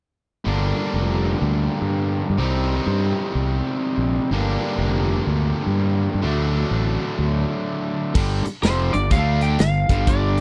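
A double-tracked, distorted guitar riff opens this brooding, smoky blues rock and southern rock excerpt at 0.4 s, joined almost at once by a fuzzy, overdriven fingered bass, both sitting up front in a dry, close 1970s-style studio sound with a swung feel over a minor-key progression. At 8.2 s a big acoustic rock kit crashes in with punchy kick, a medium-tuned snare, hi-hat and bright cymbals, and at 8.6 s a twangy, compressed lead guitar with a slightly broken-up edge picks out a high melody as the harmony shifts to hard power chords.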